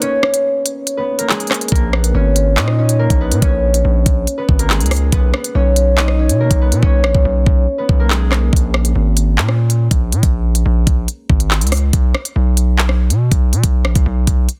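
A dense, heavily limited modern mix with digital ambience frames this ominous, menacing drill excerpt, which moves with a half-time feel. A ringing, fingerpicked concert harp carries the melody up front through a low-pass filter, alongside an electronic drum kit of knocking kick, crisp hi-hats, handclaps and rim clicks. A saturated, aggressive 808-style bass with a noise layer and fast, decaying attack joins at 1.7 seconds, the hi-hats drop out briefly at 6.8 seconds, and the harp stops at 11.2 seconds, leaving drums and bass to close.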